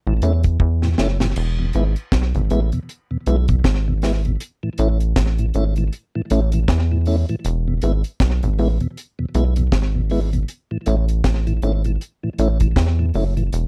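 Roots reggae at 79 BPM in E major, this short excerpt from a longer piece carries an uplifting, sunny mood with a relaxed 16th-note swing. A rubbery, bouncy square-wave bass sits up front, its hollow, resonant tone shaped by a fast-attack filter pluck that decays after each note. A deep acoustic drum kit with a high-tuned snare, tight kick, hi-hat and crash cymbal carries a slapback echo, and a drum fill from 0.6 to 1.4 seconds leads into the second section. A mellow tonewheel organ supplies accompaniment, its round, dark, clean tone colored by a slow rotary speaker, vibrato, key click and its own slapback echo. The harmony moves between A and E, and the dry, close 1970s-style studio sound keeps every part intimate and present.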